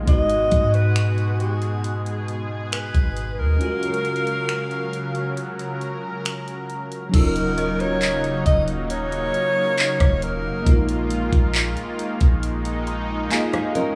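A bell-like tine electric piano and a lush, detuned sawtooth pad with chorus open this sensual, moody contemporary R&B piece at 68 BPM in Eb minor, over a deep, boomy 808-style bass and an up-front trap kit of knocking kick, bright hi-hats, snaps, claps and rim clicks. A breathy, close-miked alto saxophone carries the jazz-style melody with vibrato and tape echo, moving through Abm7, Gbmaj7, Ebm7 and Bb7sus4 chords. A very quiet inharmonic FM chime rings in at 7.6 seconds, the electric piano takes a fill near the end, and a full-bodied fingerpicked nylon-string guitar slips in with arpeggios at 13.5 seconds, all within a light small-room ambience.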